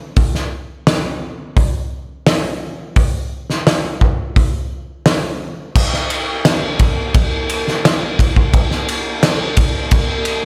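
Dreamy and hazy, this short rock excerpt moves at 86 BPM in a straight 4/4 feel. A loose indie drum kit carries the whole recording on its own, entering at 0.2 seconds and playing through to 10.4 seconds. The kit sits up front in an acoustic studio room with a pumping ambience, where a fat snare and punchy kick anchor the groove beneath dark cymbals. Crash, hi-hat and ride cymbals round out the kit, and a light reverb softens the overall sound. The piece shifts into a new section at 5.8 seconds, giving the brief fragment a sense of movement as it is cut from a longer piece.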